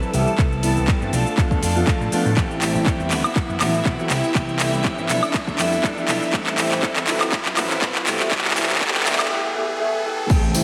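Funky and sensual, this filtered disco house excerpt builds for its full length, with a filter sweep running from the start to 10.3 seconds, a break and swell at 9.3 seconds, and an impact landing at 10.3 seconds. Punchy overdriven electronic kick and an up-front house kit with bright hats, handclaps, cabasa, woodblock and crash drive a swung groove beneath an amped slap bass, a boxy grand piano with audible action noise and phaser, a dark picked clean guitar riff with 12-bit sampler grit, and a lush, chorused string machine holding sustained chords in the background. Everything but the kick rides sidechain pumping over a Cmaj7, Bm7b5, Am7 and rootless D13 progression. A very quiet riser creeps in at 3.1 seconds, a tambourine appears only at the very end, and a long hall reverb gives the mix a dreamy, soaked sheen.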